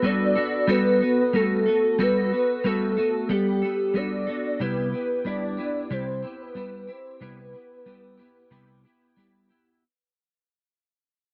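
A dry, close 1970s-style studio sound with light reverb frames this laid-back, nostalgic indie pop fragment at 92 BPM in 4/4, where a round, dark, octave-layered synth lead carries the melody through phaser, ensemble chorus and tape echo until 9.2 s, while a clean, scooped, picked electric guitar with ensemble chorus and vibrato accompanies over Gmaj9 moving to Cmaj7 at 4.6 s, the passage fading out throughout to 9.8 s.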